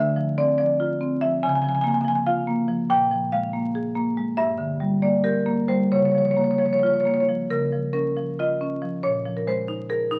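The recording carries the crackle of a very old 78 rpm record, with a moderate amount of large-studio reverb giving the sound some air. Through that patina comes a contemporary classical piece for solo marimba, played with medium-hard mallets on rosewood bars, its tone woody, bright and percussive and placed up front. The mood is warm and playful, the pulse moving in a rubato 7/8 that lets the phrasing bend freely. The marimba spans a broad range from G2 up to Ab5, drifting through colourful harmonies such as Dm9, Db6, Gm6 and a closing Bb9sus4 that arrives at 9.0 seconds. This short fragment of a longer work runs about 10.2 seconds, with its opening idea returning at 7.5 seconds.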